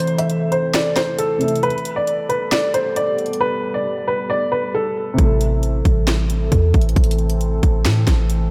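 A soft, felt-muted upright piano carries the melody up front in this eerie, brooding half-time trap excerpt, its thin, intimate tone with audible action noise blurred by delay and a low-pass filter, while a dark concert grand adds vintage-sounding accompaniment through analog chorus and a deep, detuned sawtooth pad sustains slow-blooming chords underneath. Hard-clipped kicks, a sharp snare, bright hats and finger snaps from an overdriven electronic kit drop out from 3.4 to 5.2 seconds, when the piano melody ends and a clean, boomy sine 808 enters with a fast attack. The dreamy mix is soaked in church-like reverb, moving from A minor to Gadd9 and back.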